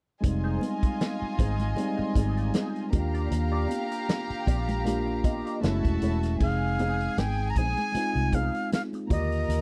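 This short cut from a longer piece of lush, romantic 1970s-style soul opens with drums, bass, electric piano, violins and guitar entering together. A vintage drum kit with a punchy kick and a medium-tuned snare sits up front beside a round, foam-muted fingered bass, while a mellow tine electric piano supplies clean accompaniment through its built-in speakers. A studio violin section carries a second line with light vibrato and a reedy, gut-string, period tone, and a dark, compressed electric guitar plays a wah riff in the background. From 0.5 seconds, very quiet, high-tuned congas add a bright, damped texture under soft hands as the harmony moves through Fm7, Ebmaj9 and Gbm7 with a gentle swing on the sixteenths. At 6.4 seconds a breathy jazz flute enters up front with the melody, its crisp attack and chiff lending air to the dry, close studio sound.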